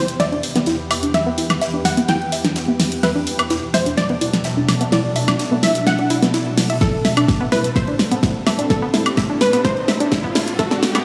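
A lush hall ambience fills this expansive, bittersweet progressive house build-up at 127 BPM, where a detuned sawtooth unison pluck carries the melody with dub echo over a shimmering, ethereal pad with phaser and a tight, driving arpeggiated synth, while an up-front deep house kit with a fat snare and woodblock and a background arena kit with bright cymbals play through a drum fill, filter sweeps move over the pad and arpeggio through the Em, Bm7 and Am7 chords, a deep electronic kick enters at 6.8 seconds, and a riser joins at 8.4 seconds in this excerpt from a longer piece.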